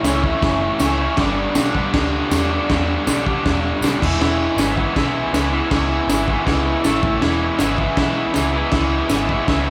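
A raw, lightly reverberant sound puts a band playing live in one room, with a bright, overdriven, double-tracked electric guitar up front driving a riff in E major at 159 BPM in a straight 4/4. This short, swaggering cut of garage rock moves through A, G and E, touching an A5 before settling back on E near the end. The acoustic drum kit is saturated and gritty, with dark cymbals, a punchy kick and a high-tuned snare, its rolled-off top sitting close alongside the guitar. Underneath, a vintage foam-muted picked electric bass gives a round, dark, amped low end, while a close, dry tambourine jingles in the background. At 4.2 s a buzzy, overdriven combo organ slips in with very quiet sustained chords carrying a light vibrato, holding on until the cut ends at 9.7 s.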